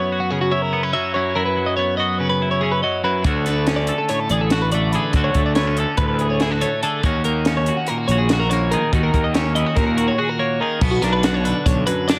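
Over a straight-feeling 9/8 pulse, this bright, playful excerpt of math rock and midwest emo opens with two clean, compressed twelve-string electric guitars, one picking warm accompaniment and the other picking twangy, up-front arpeggios, before a growly, overdriven fuzz bass and a compact cocktail drum kit with dark cymbals, a high-tuned snare and a punchy kick join at 3.2 seconds, all in a light reverb as the chords move from F#7sus4 through Dmaj7 and D#m7 to Bm.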